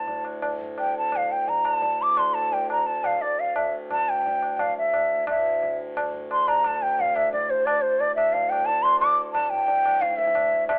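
A straight 4/4 pulse at 175 BPM gathers pace across this short excerpt of Hindustani classical music, with the close, low-tuned tabla ringing in from 0.1 s. Set in raga Darbari on D and tuned to A4 = 441 Hz, the mood is introspective and solemn. Up front, a mellow bamboo bansuri carries the melody between C5 and D6, its airy tone shaped by vibrato, soft attacks and rolled-off highs, and bathed in plate reverb. Beneath it, a hand-pumped harmonium holds a reedy, nasal, breathing drone low in the register, from D2 to A2, sitting well back in the balance. The music moves into a second section at 5.3 s, while a moderate studio ambience and a narrow, telephone-like sound colour the whole recording.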